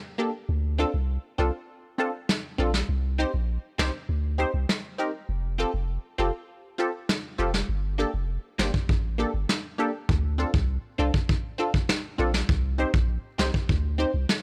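A detuned, wave-folded chord stab with a sawtooth-and-triangle bite, a plucky filter, a moving notch and a chorus sheen opens this sultry, bouncy dancehall excerpt, cycling through Dm7, Cm, Fadd9 and Gmadd9 over a deep, sine-based sub bass with a pitch-drop attack. A muffled, lo-fi brush kit with a punchy kick and a medium-tuned snare joins at 2.3 s, and the kick briefly drops out from 7.7 to 8.3 s. All three parts sit up front in a dry, gritty small-room recording, the kit's rolled-off top giving it a vintage feel.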